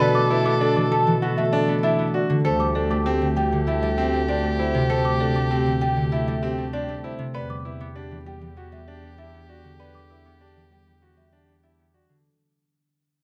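Hypnotic and meditative, this minimalist classical pattern music moves at 98 BPM in a straight 4/4, cut from a longer piece and fading out across its full 12 seconds. A marimba played with soft mallets carries the melody with a woody, round tone, while a clear soprano saxophone with vibrato traces a second line. The concert harp, fingerpicked and up front, provides ringing accompaniment, and a bright grand piano spins arpeggios with long sustain and audible action noise. A delicate, bell-like celesta adds its own dry, close arpeggios in the upper register, and a warm bass clarinet anchors the low end. The harmony drifts from Bm7 to D7sus4 at 2.4 seconds and settles on Em7 at 7.3 seconds, all captured with close, detailed microphones in a moderate recital hall reverb.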